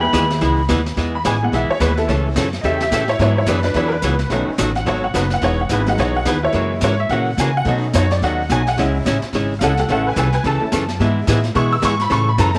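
Cheerful and down-home, this western swing excerpt in E major moves at a brisk 215 BPM with a swung feel, opening with a brief clean lap steel guitar line of slide and volume swells that ends at 0.8 seconds. A jangly, detuned honky-tonk upright piano then takes a bright solo from 1.0 seconds, backed by a dark, hollow-body archtop guitar, a woody, thumpy pizzicato upright bass sitting up front, and a brushed jazz drum kit with a high-tuned snare and a boomy kick. Moderate echo chamber reverb surrounds the band with studio ambience.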